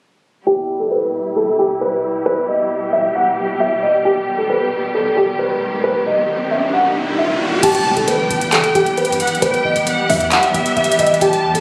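A half-time trap pulse in 4/4 drives this eerie, brooding hip hop piece, cut from a longer work. From 0.5 seconds a dark, boxy concert grand piano carries the melody up front, over sustained chords from a muted, veiled symphonic string section, both passing through a low-pass filter sweep. An electronic riser builds from 5.5 seconds and lands on an impact at 7.6 seconds, where the trap drum kit enters with metallic hats, handclaps and a crash cymbal. At that point a short, punchy 808-style bass with a sine tone sits in the background, and a distant studio violin section adds an expressive second line with portamento and digital delay. The sound has light studio reverb and compression, with the slightly roomy character of a phone recording.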